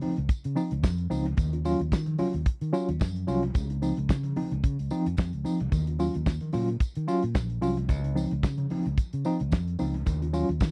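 The damped drum kit anchors this disco excerpt, sitting up front with a fat snare, a tight kick and hi-hat, its dry tone rolled off at the top. A fingered electric bass joins at 0.2 seconds, amped and punchy, moving through the low register beneath a tine electric piano that plays accompaniment chords with a medium tremolo through a combo amp. The piano sounds clean yet worn and slightly out of tune, alternating between Dbmaj7 and Ebm7 in a gently swung groove. Very quiet congas with a thin, bright skin and hard hands sound distant, as if in a large room, while a jingly, band-limited vintage tambourine enters at 0.3 seconds in the background. The dry, close 1970s-style studio sound keeps the danceable, celebratory mood intimate.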